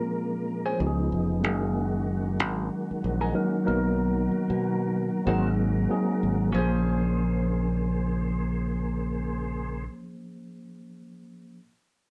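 Late-night and soulful, this short neo-soul R&B groove moves at 94 BPM in 4/4 with a lilting sixteenth-note swing, set in B-flat minor and tuned to A4 = 444 Hz. A mellow tine electric piano sits up front carrying the accompaniment, its tone coming through built-in speakers, while a tonewheel organ holds clear sustained chords beneath, colored by chorus vibrato and a fast rotary speaker. A growly, punchy fingered electric bass enters at 0.8 s to anchor the low end, and a compressed, picked clean electric guitar adds a second line through a wah. The harmony moves through rich chords such as Bbm9, Db9, Gb69 and Bmaj7, returning to Bbm9 as a new section begins at 6.5 s. The band sounds as if it is playing live together in one room with a moderate studio reverb, and the electric piano rings on alone until 11.6 s.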